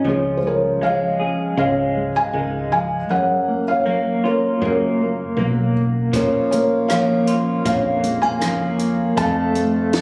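Melancholic and intimate, this acoustic folk-pop ballad moves at 79 BPM in a straight 4/4. A dark, thumb-plucked nylon-string guitar with audible finger squeak sits up front beside a soft, felt-muted upright piano carrying the melody, while a slightly broken-up electric guitar through a small old amp adds tremolo-laced arpeggios over a growly, round fretless bass. At 6.1 seconds a reedy, breathing pedal harmonium enters in the background with sustained chords alongside a compact cocktail drum kit with a high-tuned snare and punchy kick, the whole phone-captured performance lightly washed in club reverb.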